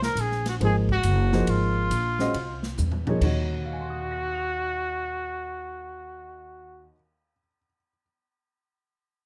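Cool and hypnotic, this short modal jazz excerpt, cut from a longer piece, swings along at 138 BPM in 4/4 with an Eb dorian color. A trumpet with light vibrato carries the melody as the soloist, sitting up front yet sounding distant and roomy. Beneath it, a woody pizzicato upright bass with steel strings anchors the low end, while a dark, mellow baby grand piano enters at 0.6 seconds and accompanies through to the close. The big-band drum kit, airy and polished with a punchy kick and medium-tuned snare, plays crash, ride, hi-hat and toms before a fill from 2.8 seconds leads into the second section and the kit drops out. The harmony moves from Ab to Ebm9, and a light reverb gives the whole a gently spacious sound.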